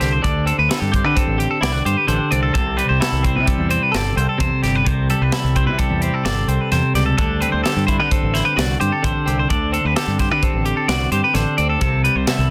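A dense, heavily limited modern master with light reverb frames this bright, intricate math rock and midwest emo passage in 5/4, cut from a longer piece and moving between D7sus4 and Am7. An up-front, compressed twelve-string electric guitar carries the accompaniment while a twangy clean electric guitar picks high arpeggios with a warbly pitch drift. Beneath them, a growling fingered bass adds overdriven grit, and an airy, polished fusion kit with a high-tuned snare and punchy kick drives the groove throughout.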